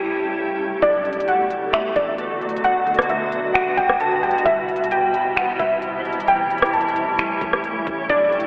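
A warbling, lo-fi pluck carries the melody up front from 0.8 s with chorus and diffuse ambient delay, over a blurred, detuned granular cloud pad with sidechain pumping and a sparkling granular texture that open the track. The trap kit's knocking kick, crisp hats, finger snaps and rim clicks join alongside a round 808-style bass in the background of this melancholic, hazy cloud-rap hip hop groove at 132 BPM in half-time, its dreamy hall-soaked mix tinged with a telephone sound.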